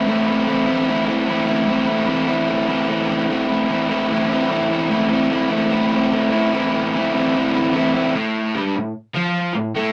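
A double-tracked, overdriven electric garage guitar plays alone and up front through this raw, swaggering rock excerpt at 148 BPM in A minor, picking over an Am chord before shifting to Fadd9/G at 8.1 seconds, with moderate booth ambience giving it the rough feel of a rehearsal-room recording cut from a longer piece.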